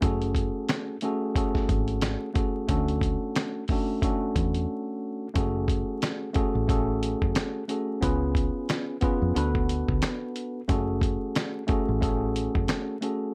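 A worn, slightly out-of-tune tine electric piano with light overdrive and a cassette-tape tint opens this gritty, dark boom-bap hip-hop excerpt at 90 BPM, joined from the start by a round, punchy foam-muted fingered electric bass and a thumpy, compressed sampler-style drum kit with 12-bit grit and a medium-tuned snare, swinging its 16ths in F# harmonic minor over F#madd9, Dmaj7, C#7 and Bm7 chords, with a short break at 4.7 seconds, and set in light reverb and vinyl crackle.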